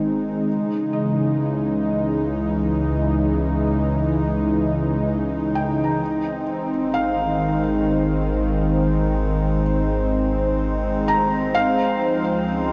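A slow, straight 3/4 pulse at 65 BPM carries this serene, weightless ambient excerpt, where an up-front, warbling analog pad with chorus holds sustained chords over a deep, ominous drone bass. A soft, felt-muted upright piano traces delayed arpeggios high above while a reedy, breathing harmonium drone fades in alongside it, the piano also fading in across the 12.7 seconds. Huge reverb and a dark, warm production bathe the progression from Dbmadd9 through Ab to Dbmaj7.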